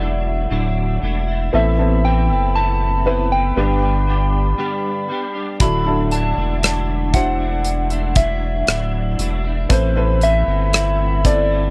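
A slow, heartbroken pop ballad at 59 BPM opens with a round, warbling FM synth lead carrying the melody through chorus and tape echo, over a woody, slightly detuned upright piano, a clean electric guitar picking arpeggios, a dark brass ensemble holding sustained chords and a thick, saturated sub bass sitting up front. At 5.6 seconds a punchy, polished acoustic drum kit joins with kick, hi-hat and rim click beneath the longing Dadd9, Amadd9 and G changes. The dry, close 1970s-style sound keeps every part intimate in this brief cut from a longer piece.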